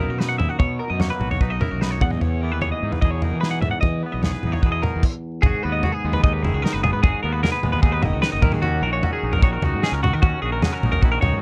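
Playful and wistful, this math rock and midwest emo excerpt sets a bright, clean twelve-string electric guitar up front playing arpeggios over the picked, twangy accompaniment of a second electric guitar, moving from Bmaj9 to Emaj7 and later from G#m7 to D#m7. A punchy, fuzz-overdriven fingered bass and a loose indie drum kit with a rolled-off top, heard in a small room, fill out the low end, and the music stops briefly from 5.0 to 5.4 seconds before the second section begins. The production is dark and dry, with little reverb.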